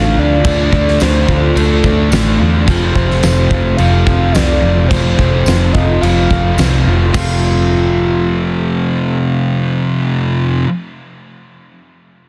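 A steady, straight 4/4 pulse carries this wistful, dreamy shoegaze and dream pop rock excerpt, where a round, chorused synth lead sings the melody until 6.6 seconds over a very quiet, shimmering twelve-string acoustic guitar playing fingerpicked arpeggios, background riffs from a clean direct-recorded electric guitar with reverse reverb, a bright double-tracked overdriven guitar and a dark, thick fuzz guitar, a foam-muted, punchy electric bass, a huge arena drum kit with fat snare and bright cymbals entering at 0.4 seconds, and a jingly tambourine, all in a dense, heavily limited modern master.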